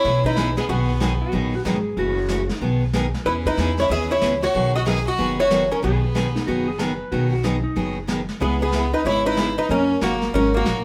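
Swinging and down-home, this western swing cut moves at 187 BPM in B major, with a hollow-bodied, miked electric archtop guitar carrying the melody up front while a biting, airy-bowed fiddle with light vibrato adds a second line. A bright, full-bodied picked acoustic guitar fills in the accompaniment over a woody, thumpy upright bass and a vintage brush kit with a rolled-off top. A dark, clean lap steel slides in briefly at 1.2 and 6.4 seconds, all captured as a band playing live in one room with a wet studio reverb.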